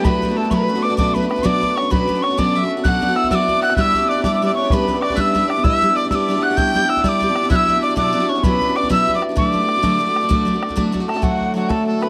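A bright, rollicking Celtic slide in 12/8 at 129 BPM opens with the full ensemble at once: an airy metal whistle carries the melody up front with vibrato, tongued chiff and a tape echo, while a shimmering hammered cimbalom and a rich, nasal bowed fiddle, also touched by tape echo, weave second lines beneath it. A picked steel-string acoustic guitar, bright and close with audible finger squeak, picks through Bm, G, Bm and D, and a boomy, dry bodhran drives the straight feel. A wet small-room reverb surrounds this 12.1-second excerpt cut from a longer piece.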